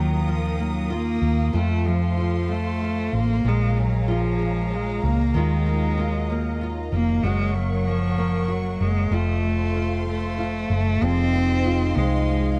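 In a steady six-eight pulse, this aching, dramatic pop ballad fragment sets a rich, smooth bowed cello melody with vibrato up front, over a dark, fingerpicked, double-tracked flamenco guitar, a lush, woody studio string section holding sustained chords, and a round, punchy hollow-body electric bass. The chords move from Ebsus2 through Bbm7, Ebmadd9 and Gb before settling on Fm7, where a dark French horn section with a soft attack enters at 11.0 s in the background with a second line. Light reverb and studio ambience frame a dark production.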